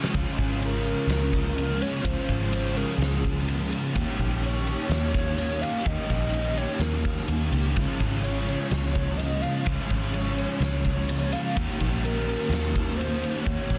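A dreamy, wistful shoegaze and dream pop rock fragment in Db lydian at 126 BPM opens with a punchy, fat-snared arena drum kit of kick, snare and ride up front, a biting overdriven guitar riff trailed by reverse reverb, a thick fuzz guitar riff with distortion and ensemble chorus in the background, and very quiet compressed, slightly broken-up arpeggios from a guitar through a small old amp, before a dark, round, foam-muted electric bass joins at 0.1 seconds and a soft, pure sine lead with vibrato, chorus and tape echo sings its melody from 0.6 seconds over chords moving between Db6 and Eb7, all in a dry, dense, heavily limited modern master.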